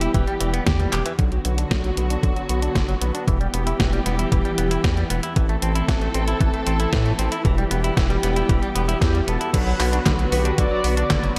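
Bittersweet and nostalgic, this italo disco passage in E minor moves at 115 BPM in a straight 4/4, cut from a longer piece. An electronic kick drum with a thumpy, overdriven punch sits at the front alongside a detuned 8-bit digital drum machine supplying a fat snare, handclaps, hi-hat and crash cymbal, given a gated reverb and a small-room character, with a drum fill at 0.9 seconds. A round analog bass anchors the low end with a deep, wave-folded tone, while a direct-recorded clean electric guitar plays twangy, compressed arpeggios that carry a digital delay and a filter sweep from 1.2 to 9.5 seconds. Alongside them, a dark symphonic string section holds lush, woody sustained chords with vibrato, sounding distant in the mix. A mellow synth brass melody, detuned and ring-modulated with chorus and delay, appears briefly at the start and returns from 9.0 seconds as the harmony cycles through Em, Bm and Am.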